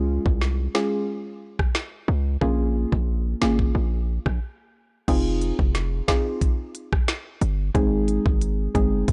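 A punchy, heavy 808-style bass with a noise layer anchors this bouncy, tough dancehall excerpt, joined at 0.3 seconds by an electronic island pop kit with a knocking kick, woody snare, smooth hats, rim clicks and crashes, while a dark, wave-folded pluck with chorus and sidechain pumping sits up front in a dry, gritty digital ambience, with a brief break at 4.4 seconds before the second section begins at 5.1 seconds.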